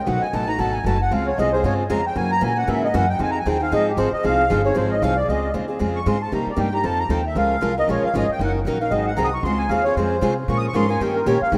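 Virtuosic and bittersweet, this fragment of acoustic string swing in the jazz manouche style features a reedy, sweet accordion with light tremolo tuning soloing up front for the full 11.6 seconds, backed by a bright picked steel-string acoustic guitar with audible finger squeak and a woody, growly pizzicato upright bass, all set in a lush hall reverb within a rough home demo mix.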